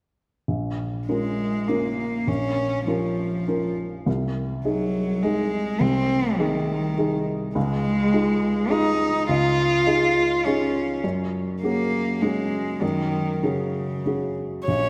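A lush hall reverb soaks this dreamy neoclassical recording, giving the close, up-front instruments a long, hazy tail. An upright piano with a mellow, woody tone opens at 0.5 seconds, laying down a longing, reflective accompaniment in a rubato three-four time that moves from Bbm to Ab/C, Dbadd9 and Gbsus2. A single dark cello joins at 1.1 seconds as a second line, bowed sul tasto with a soft attack and light vibrato for an intimate, hushed voice. Just before the fragment ends, one warm viola touches in at 14.7 seconds on a high, airy note, its bow soft and its vibrato gentle. The passage is cut from a longer piece.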